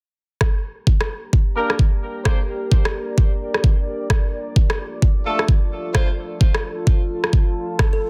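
A swung 16th-note groove at 130 BPM drives this bouncy, swaggering bass house cut in G minor, with a knocking, layered electronic kick and a softly clipped rim click sitting up front over a Gm to Dm progression. A deep, moody pad of detuned sawtooth and sub-octave sine fades in slowly with chorus and its own reverb, pumping under the sidechain, while a tight, jazz-style horn section with light vibrato punches short stabs at 1.6 and 5.3 seconds through a sweeping low-pass filter and delay. A woody, mellow kalimba pluck rings out at 7.8 seconds, all within a dry, dense, heavily limited modern mix.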